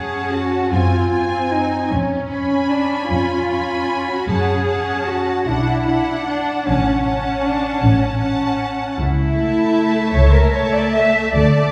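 A slow, rubato 6/8 sway at 50 BPM in dotted quarters carries this solemn, elegiac passage for string orchestra in F# minor, cut from a longer romantic movement. A focused violin section sings the bowed melody with a smooth top, a second violin section adds a lush line beneath, distant violas fill in the accompaniment, and up-front cellos and woody double basses anchor the bass, with every section shaded by vibrato. The harmony moves from F#m through G#7/F# and C#7/E# to Bm before settling on A/C#, and the strings are heard from further back in a reverberant concert hall.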